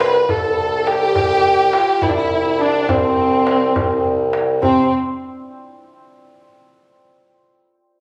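Captured on a phone in the room, this short cut from a longer piece has a compressed sound and the ambience of a club. It is a stately, festive Persian modal ensemble piece in C dastgah mahur, moving at 69 BPM in a straight 6/8. A dark, woody kamancheh carries the melody up front, bowed by one player with vibrato and portamento. A rich, lush symphonic violin section with focused tone adds a second line, while a mellow, vintage-sounding bassoon plays the bass in classical style, also up front, with light vibrato. A tight tombak adds percussion, and a very quiet hammered santur shimmers and rings beneath. After a change of section at 4.6 s, the other parts stop at 4.9 s, leaving the santur alone until 6.3 s.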